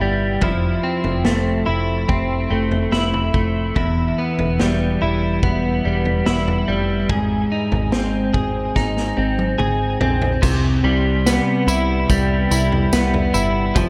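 Dream pop at 72 BPM in 4/4 with a straight feel, this short cut from a longer piece in C major has a dreamy, ethereal mood. A clean electric guitar plays arpeggios from the start, picked, compressed and up front, its tone colored by analog chorus and delay. A picked electric bass sits underneath with a dark, round, foam-muted sound, while a vintage drum kit joins at 0.4 seconds, distant and roomy with dark cymbals, a punchy kick, a medium-tuned snare, tambourine, toms and crash cymbal. The harmony moves from Fmaj7 to Em and then Ab, and a drum fill from 8.8 seconds leads into a new section at 10.4 seconds that settles on Cmaj7. Light reverb and a small room ambience give the whole a soft, intimate space.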